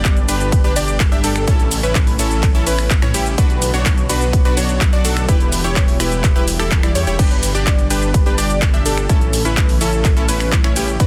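From the first beat of this anthemic, euphoric festival progressive house cut at 126 BPM, a punchy, up-front electronic kick leads an overdriven big-room kit of crash, ride, hi-hat, shaker, finger snaps and handclaps, while a thick, chorused detuned saw bass, a fast-attack supersaw stab riff with a filter sweep and tape echo, a dark unison lead playing echoing arpeggios with vibrato, and a bright, lush unison pad holding sustained chords in the background each pump to the sidechain over a G, A, Bm, Em progression in a dense, heavily limited master.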